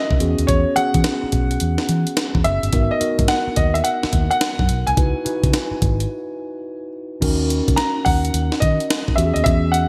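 A swung 16th-note new jack swing groove at 107 BPM drives this punchy, confident R&B fragment. Gritty, pitched-up sampler-style drums sit up front with a thumpy kick, a high-tuned snare and gated reverb, and a dark, round, foam-muted fingered bass lies beneath them. A clean, mellow tine electric piano comps through E69, rootless G#m7 and C#m11, then D#m7. Over it, a natural-sounding baby grand plays an upper-register melody up front. A short break runs from 6.1 to 7.2 seconds, and the whole sits in a bright 1980s-style digital production with a moderate plate reverb.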